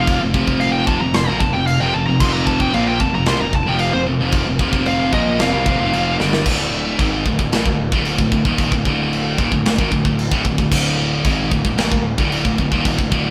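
An epic, relentless stretch of heavy metal opens with a high-gain lead guitar soloing in a warm, distorted voice over a dense wall of riffing, heard as a band playing together in a stone room with a moderate reverb. Beneath the lead, a bright, up-front high-gain guitar drives the main riff, joined by a second distorted guitar that sits in the background with a scooped, compressed tone. A growly, fuzz-laden picked bass anchors the low end, while a tight acoustic drum kit, its kick equally tight, with a medium-tuned snare and bright china and crash cymbals, sits up front in the mix. A drum fill at 6.2 seconds arrives as the lead falls away, and at 6.5 seconds the background guitar drops out too, leaving the main riff guitar, bass and drums to carry the second section. The harmony moves from F5 to D5 at that point, keeping the heavy, driving feel through to the end of this cut from a longer piece.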